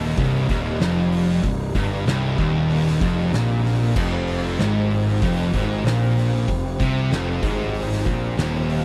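A bright, double-tracked and compressed distorted electric guitar sits up front in this short stoner and doom metal clip, grinding out a low riff in a straight 4/4 feel. Two picked fuzz guitars sit behind it, each playing a riff, one warm and one dark, thickening the wall of tone. A punchy, overdriven fuzz bass adds weight underneath, heard both direct and through an amp, while an oversized low-tuned acoustic kit joins at 0.2 s with a fat snare, punchy kick, hi-hat and crash, its gritty, saturated sound pumping in a bright stone room. Deep in the mix, a fat, clean percussive tonewheel organ holds sustained chords with key click, third harmonic percussion, chorus vibrato and a slow rotary speaker. The harmony moves from C minor to an F power chord at 4.0 s, and the dry, heavy, hypnotic sound is cut from a longer piece.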